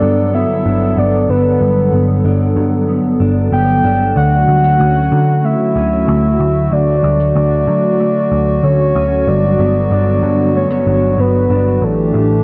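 A soft, octave-layered synth lead carries the melody in this dreamy, ethereal dream pop passage, its full, round tone sitting up front with chorus, vibrato, analog delay and a cassette-tape colour. Beneath it, a hollow, flute-like pad holds sustained chords with a slow attack and long release, its detuned shimmer thickened by chorus. A mellow, clean electric guitar plays fingered arpeggios through ensemble chorus and analog delay, while a vintage foam-muted picked bass gives a dark, amped low end warmed by tube saturation. At a straight 94 BPM in 4/4, the harmony moves from Gmaj7 to Dmaj7 at 4.2 seconds, returns to Gmaj7 and settles on A7sus4 near the close. Light reverb and digital ambience surround this home cassette recording, a 12.4-second cut from a longer piece.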